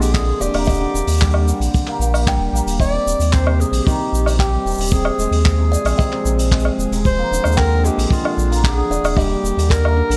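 This hopeful, playful folktronica piece, cut from a longer work, opens with a distant, roomy clarinet carrying a classical-style solo melody through a digital delay. A warbling, nostalgic pad sits in the background on sustained chords, while a hammered dulcimer rings out mellow, shimmering arpeggios underneath. A deep, round sine sub bass sits up front, joined by a vintage brush kit of handclaps, hi-hat, shaker and woodblock, with a tight, rolled-off kick arriving at 0.1 seconds. From 0.4 seconds a delicate, tinkling music box, slightly out of tune and airy, adds a second line far back in the mix through its own digital delay. The harmony drifts from Bb7 to Ebmaj7, Cmadd9/Eb, Fm/Eb and Bb7/Eb before settling back on Ebmaj7, all set in a light, small-room ambience.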